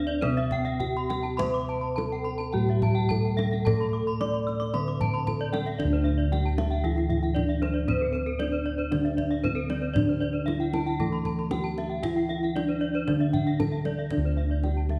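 Set in a moderate, roomy reverb, this shimmering, ceremonial Balinese gamelan passage, cut from a longer piece, pairs a mellow metallophone melody struck with padded mallets against bright, airy horn-mallet metallophone arpeggios, both ringing with the beating shimmer of paired tuning, and a lower, bright horn-mallet metallophone accompaniment sitting in the background, while round, up-front bossed gongs carry the bass and a deep, compressed, saturated kendang, played with hard hands, joins in as the music moves into a second section at 5.8 seconds.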